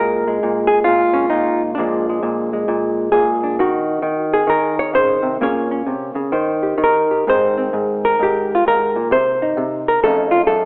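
Solo jazz with a late-night, swinging mood, this excerpt from a longer piece features a dark, clean, compressed hollow-body electric guitar played up front with the fingers, loosely swung and rubato across 10.7 seconds of rich chords like Ebm7, Abmaj9 and F7b13, heard through a wet large-studio reverb and a narrow telephone-like tone.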